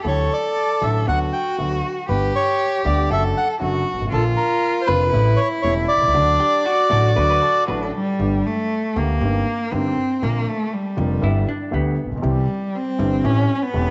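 Elegant and nostalgic, this tango fragment moves at 118 BPM in 4/4 with a rubato feel, set in D major and drifting through borrowed colours such as Bb and Eb6/G. A reedy, dark bandoneon carries the melody up front until 7.6 seconds, its tone smooth. Beneath it, a bowed solo cello sings a second line with vibrato and portamento, its nasal, boxy voice sitting close and expressive before it takes over as the solo from 8.2 seconds. A concert grand piano gives warm accompaniment with deep bass and short sustain, while a pizzicato upright bass on steel strings adds a woody pulse at the bottom. From 6.4 seconds a clean, picked hollow-body electric jazz guitar slips in with a dark, compressed second line. A moderate echo-chamber reverb gives the studio sound a soft halo, and the top end is gently rolled off above 8 kHz.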